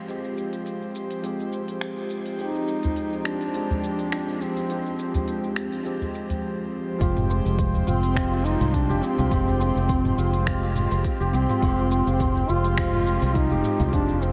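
A mellow, distant duduk carries the folk-style melody with vibrato and scooped notes from 2.4 seconds, drifting through a hypnotic, mystical organic downtempo excerpt in F minor at 104 BPM with a gentle 16th-note swing. Beneath it, a barky, bell-like tine electric piano and a breathy, detuned pad sit in the background, pumping with sidechain and chorus over an Fmadd9 chord, while a shimmering hammered santur, crisp electronic hats, finger snaps, shaker and toms, and a deep, band-limited udu fill out the groove. At 7.0 seconds, a round, dark fretless electric bass and a soft electronic kick join as the santur returns, all bathed in a huge, dreamy reverb.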